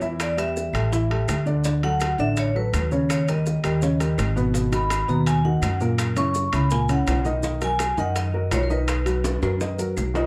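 A metallic, ringing vibraphone with fast motor vibrato and plate reverb carries the melody in this lively, sophisticated Afro-Cuban jazz excerpt, over an intimate baby grand piano with audible action noise and a woody pizzicato upright bass up front, while high-tuned bongos, grainy maracas, very quiet claves and metal-shell timbales fill out the percussion in a small, reverberant room heard from further back, before a drum fill at 9.2 seconds.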